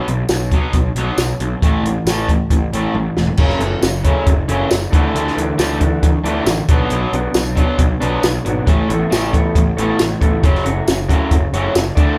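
Carefree yet wistful, this indie rock excerpt moves at 136 BPM in a straight 4/4, with a raw garage guitar riffing up front in a bright overdriven tone over a punchy, fuzz-laden picked bass and a dry compact cocktail drum kit with dark cymbals, a high-tuned snare and tambourine. After a drum fill ending at 3.4 seconds, a second electric guitar enters through a small old amp, adding a dark, slightly broken-up lo-fi riff as the chords shift from F#m7 through Dsus2, Bm and Aadd9. The band sounds like it is playing live in one room with light reverb.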